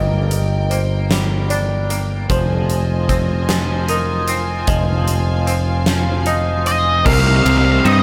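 A slow, straight 6/8 pulse drives this brooding, cinematic post-rock excerpt, with a huge arena drum kit entering at 0.3 seconds, bringing punchy kick, fat snare, hi-hat, ride and bright crash cymbals in a hall-sized sound. Beneath it, an overdriven picked electric bass sits dark, round and up front. A rich studio string section holds floating, soft-attack chords, while a felt-muted upright piano plays intimate, mellow arpeggios through analog delay in the background. A twangy, scooped clean electric guitar adds its own arpeggios with tremolo and analog delay as the harmony moves from Ebmaj7/G to Fm7 and on to Cm7. Near the end, a fuzzy octave lead guitar bursts in at 6.7 seconds with a distorted, delayed melody, and a raw garage guitar joins at 7.1 seconds with an overdriven riff, all set in a light, small-room reverb.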